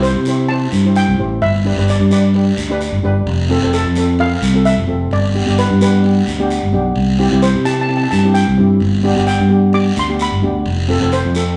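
A bouncy 4/4 calypso groove with a light sixteenth-note swing carries this carefree excerpt, where a dark, smooth lead steel pan on medium rubber sticks sings the melody over a mellow double-seconds pan struck with soft rubber sticks, a growly, overdriven fingered electric bass sits up front, and a raspy, distant guiro scrapes along in a moderate stone-room reverb as the chords move from C through G and Fmaj7 to F.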